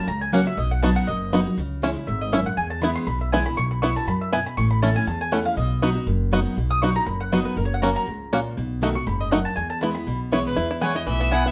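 Virtuosic and joyful, this brief bluegrass cut from a longer piece swings along at 240 BPM in E major, with a woody, up-front mandolin taking a solo of double-string stabs from the start until 10.6 seconds over picked dreadnought guitar with audible finger squeak, growly pizzicato upright bass and twangy, percussive banjo arpeggios played with fingerpicks, while a rich, earthy bowed fiddle enters with the melody at 10.3 seconds as the solo draws to a close, all in a moderate studio reverb.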